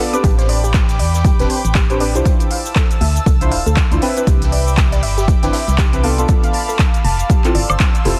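Densely limited and dusted with vinyl crackle, this hypnotic, late-night deep house excerpt swings over a punchy, overdriven kick and a smooth-hatted electronic kit of cabasa, handclaps, hi-hat and woodblock, with a very quiet acoustic big-band kit adding hi-hat and snare, while a hollow, organ-like FM bass pumps beneath soft, dark chord stabs treated with phaser and delay, a warbling lo-fi pluck arpeggiates in the background, and an airy, breathy pad sustains chords moving from Am11 through Dm9, Cmaj9 and Bm7b5 to G13sus4.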